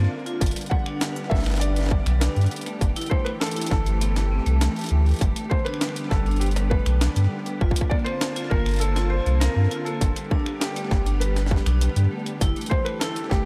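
A deep, round sine sub bass sits up front in this wistful, playful IDM excerpt, holding a mellow, sustained low end beneath a straight 100 BPM groove in G major. A distorted electronic kick drum joins at 0.4 s, just after a gritty, pitched-up jungle sampler-style kit of finger snaps, hi-hat and a compressed, medium-tuned snare enters at 0.3 s with a tape-warm, small-room character and a touch of delay. Over this, a felt-muted upright piano carries the melody with an intimate, soft tone, its audible action noise and thin felt giving it a close, hushed quality, trailed by delay. A vibraphone struck with hard mallets spins metallic, ringing arpeggios through a boxy small room, with medium motor vibrato and its own delay. A silky vintage string machine fills in slow-attack sustained chords with long release and ensemble chorus, moving from G to A7(no3)/G and back, then to Bbmaj7/G, returning to G and closing on A7(no3)/G, all bathed in light reverb and digital ambience.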